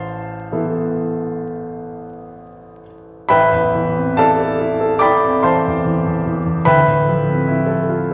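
The rhythm moves in a free, rubato 4/4, hovering between 61 and 75 BPM. It gives this short classical fragment of impressionist solo piano an unhurried, breathing pulse. Set in A minor, the mood is mysterious and nocturnal: an Amadd9 colour opens the passage at 0.0 seconds and gives way to a Dm9 at 6.6 seconds, and the material shifts into a new section at 3.3 seconds. A grand piano carries the whole 8.1 seconds alone, ranging from A1 up to D6, with a clear, natural and intimate tone that sits up front, close enough that the action noise of the instrument is audible. Around it, a wet recital hall reverb with a 1.7-second decay lends the piano a lingering halo, while a layer of vinyl crackle adds a dusty patina. Cut from a longer piece, the fragment feels like a brief glimpse into a dim, candlelit room.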